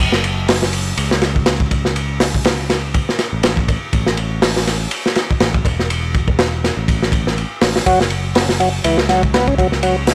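A growly picked electric bass opens this funky, gritty breakbeat cut, joined almost at once by a crunchy, up-front acoustic drum kit with a tight kick, medium-tuned snare, dark cymbals and a rolled-off top in a small, dry room, before a thick, overdriven tonewheel organ riff with key click, chorus vibrato, slow rotary speaker, 12-bit sampler grain and tape echo arrives at 7.9 seconds over swung sixteenths.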